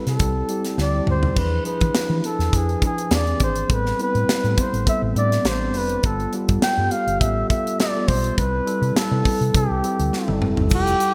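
A mellow flugelhorn carries an up-front jazz melody with light vibrato, scooped notes and a trail of delay, over clean tine electric piano chords with subtle chorus moving through C6, E7b9, Am9 and G9, in this nocturnal, bittersweet slice of polished 1980s jazz-funk pop at 103 BPM with a light sixteenth-note swing. A dark, round, punchy hollow-body bass and an airy studio drum kit with a tight kick, a high-tuned snare and gated reverb carry the groove, with drum fills at 0.8 and 10.1 seconds. A grainy tube shaker slips in very quietly at 10.7 seconds, and lush hall reverb with bright digital-era production gives the whole a glossy sheen.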